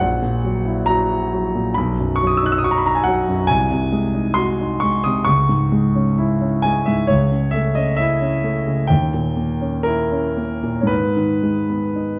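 A concert grand piano opens alone, natural and up front with a deep bass, playing a wistful, melancholic romantic nocturne in G# minor at a slow, rubato 56-70 BPM in 4/4. Over 12.2 seconds, the harmony passes through chords such as B, C#m and D#7b9 before settling on G#m at 10.9 seconds. The dark production places the piano in a recital hall with moderate reverb and a layer of vinyl crackle, in a passage cut from a longer piece.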